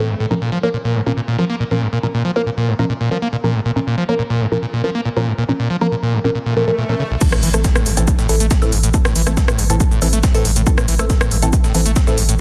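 A straight 4/4 pulse at 139 BPM drives this dark, hypnotic peak-time techno excerpt. It opens on a squelchy, resonant sawtooth acid riff with distortion, chorus and digital delay over muted, full-bodied dub chord stabs colored by phaser, both pumping against the sidechain as the harmony moves from Bbm to Am. A very quiet electronic swell and impact arrives at 6.5 seconds, and at the 7.2-second drop an overdriven, up-front kick enters with a techno kit of smooth hats, rim click, shaker and crash, plus a gritty breakbeat sampler kit with a high-tuned snare in the background, while a thick sine sub bass joins at 7.4 seconds, all set in plate reverb within a dense, heavily limited master.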